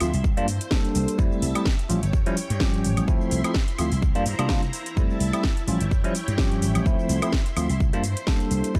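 A dry, gritty hardware recording with little reverb carries this sunny, feel-good slice of filtered disco house, cut from a longer piece and moving at 127 BPM in 4/4 with a light 55% swing on the sixteenths. Up front, a bell-like tine electric piano plays clean, bright accompaniment through a phaser, while a slap bass adds amped, punchy lines beneath, both pumping against the sidechain. Behind them, a lush string machine ensemble holds sustained sawtooth chords with a slow attack, a sub octave, ensemble chorus and vintage 12-bit sampler grit. A house drum kit of cracking snare, metallic hi-hats, cabasa and woodblock sounds tape-warm and re-recorded in a small room, its percussion and hats breathing with sidechain pumping, and a punchy electronic kick enters at 0.2 seconds. The harmony cycles through C7sus4, Fmaj7, A7b13 and Dm9, giving the groove a feel-good lift.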